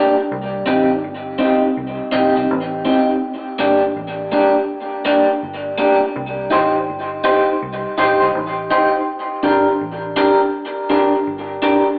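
Through an AM-radio sound and a large, wet studio reverb, this meditative, hypnotic roots reggae fragment in G minor at 82 BPM, with a swung sixteenth-note feel, sets an up-front, slightly broken-up electric guitar, compressed and picked and colored by harmonic tremolo and tape echo, over a dark, round, foam-muted fingered electric bass sitting low in the mix, as the band plays live in one room and the chords turn between Cm and Gm across about 12 seconds.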